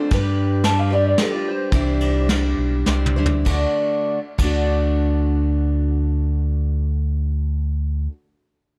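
This short folk rock and heartland rock passage in 3/4 carries an open-road, nostalgic mood, opening on a shimmering, octave-doubled twelve-string acoustic guitar picked up front in the mix. A round, amped electric bass sits forward with it, while a soft brush drum kit with a punchy kick, medium-tuned snare, ride cymbal and toms plays until 4.6 seconds, its sound natural and roomy. An electric slide guitar, dark and slightly broken-up, carries the melody as a solo from 0.6 to 3.1 seconds while the pulse slows, and a drum fill closes that stretch. The chords move from G to Cadd9 before settling on D at 3.5 seconds, where the guitar and bass continue into a new section. A small room reverb and a dark, warm production shape the sound of the whole piece.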